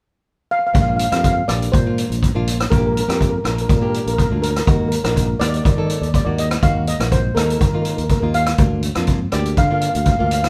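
A roomy, live-in-one-space sound with moderate reverb frames this festive, sunny calypso excerpt at 122 BPM in Bb major, where a shimmering, mellow steel pan played with soft rubber sticks carries the melody from 0.5 seconds over fresh-stringed, fingerpicked nylon-string guitar, a growly, punchy fingered electric bass and an up-front street-band drum kit with a boomy kick, hi-hat and rim click, moving through Bbadd9, Ebmadd9 and Bb/D.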